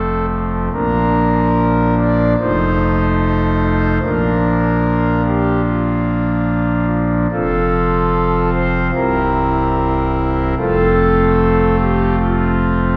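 A solo pipe organ on thick, romantic-voiced foundation stops sits up front and opens this majestic, reverent classical chorale-style passage in Bb major at a rubato 73 BPM in 4/4, spanning C1 to D5 through chords moving from F to Bb, F7 and C7 before settling on F at 10.6 seconds, all bathed in a wet scoring-stage reverb in a 13-second cut from a longer piece.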